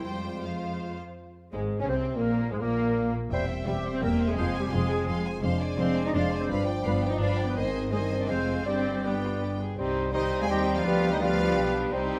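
The recording has a moderate reverb that gives the orchestra the air of a scoring stage. This stormy, restless passage, cut from a longer classical-period movement in a quick triple metre, opens with the strings and horns together. A clear first violin section carries the melody over a rich second violin line, while the violas supply background accompaniment and lush, rich cellos and double basses anchor the bass, the basses colored by expressive portamento. Mellow French horns hold sustained chords in the background. At 1.5 seconds the woodwinds join: an airy, bright flute group and a distant, roomy clarinet add second lines, and a mellow bassoon fills out the accompaniment. Near the close a clear trumpet enters with stabs at 9.8 seconds, and a vintage-toned cor anglais slips in briefly at 10.1 seconds, as the harmony moves toward C minor.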